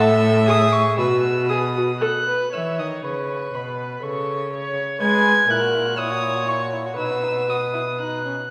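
The up-front viola stands out with a smooth-topped accompaniment in this quick, graceful and spirited classical-period movement for string quartet, taken at 119 BPM in 3/4 with a rubato feel in E major and cut from a longer piece. Above it, a dark, nasal, distant first violin carries the melody while a reedy second violin plays a lower line, and a rich cello with light vibrato holds the bass from up front, each played by a single bowed player in period style with gut strings. A wet scoring-stage reverb places the quartet further back in the room, and a new section begins at 2.5 seconds before the playing ends at 8.5 seconds.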